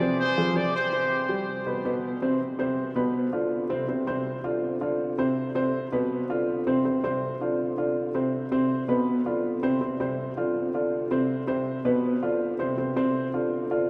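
Fiery and driving, this latin excerpt moves at 162 BPM in a straight 4/4, opening with a tight trumpet section that plays a clear, lightly vibratoed pop-style melody between G4 and D5 before stopping at 1.5 seconds. A dark, worn grand piano carries the accompaniment up front through to 13.9 seconds, its mellow, intimate tone marked by audible action noise as it cycles through Bdim and Csus24 chords broken by stretches marked N.C. A long cathedral reverb of 5.7 seconds places the playing in a church or concert hall with small-room ambience.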